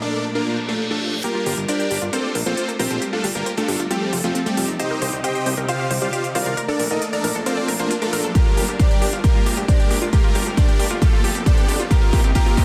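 An excerpt of emotional, soaring uplifting trance in G minor at 135 BPM opens on huge, lush supersaw chords carrying the melody up front with cassette tape coloring, sidechain pumping and digital delay. Beneath them sit a dark, mellow baby grand piano with delay, a very quiet felt-muted upright piano note that stops at 1.2 s, a distant, bright string section holding chords, and, from 0.5 s, a reverse cymbal and riser. From 1.2 s the track builds over cycling Gm7, Bbmaj7, Fadd9 and Cm chords: a punchy unison pluck arpeggio with a filter sweep and crisp, tape-warm electronic hi-hats join, soon followed by a fat, detuned analog bass, and a heavy, up-front electronic kick drum enters at 8.4 s for a drum fill, the mix set in a moderate recital hall reverb and a dense, heavily limited master.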